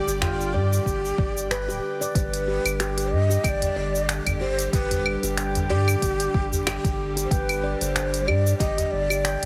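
A lightly swung 4/4 groove of claves, finger snaps, crisp hi-hat and shaker from an organic electronic kit drives this meditative organic downtempo excerpt. A soft, tape-tinged electronic kick enters at 0.9 seconds and drops out from 1.5 to 2.2 seconds, while a small, dry udu sits in the background and a round, deep analog bass holds the low end. Above them, a breathy, unsteady ney with vibrato carries the melody through delay, a ringing handpan plays arpeggios with its own delay, and a chamber string section sustains intimate, softly bowed sul tasto chords with sidechain pumping, all in a heavily compressed, radio-like mix with light small-room reverb.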